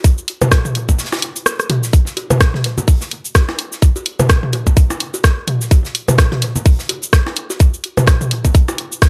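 A 4/4 groove at 127 BPM with a 57% swing on the 16ths drives this hypnotic, sparse techno excerpt, built on a tight, layered electronic kick up front and a layered garage kit of cabasa, hi-hat and rim click, with an airy, polished acoustic kit of high-passed hi-hat and medium-tuned snare sitting in the background, while electronic toms, bongos, congas and cowbell enter at 0.4 s up front with tape echo and a large-room sheen, and a brief break arrives at 1.0 s.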